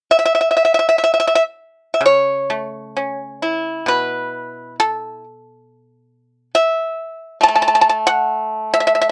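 A solo pipa carries this short passage, sounding from 0.1 to 9.1 seconds, its plucked tone close, dry and percussive, with a warm body beneath the attack from the fingerpicks. This traditional Chinese piece moves in a pastoral, flowing mood, with a free, rubato pulse hovering around 62-69 BPM in a loose 4/4. The melody sits in an E zhi mode and ranges from B2 up to A5, and the instrument is tuned slightly below standard pitch, with A4 at 438 Hz. The pipa stays up front in a dry, intimate recording that evokes a 1970s studio, with little reverb around the strings. Cut from a longer piece, the fragment presents a single unbroken section.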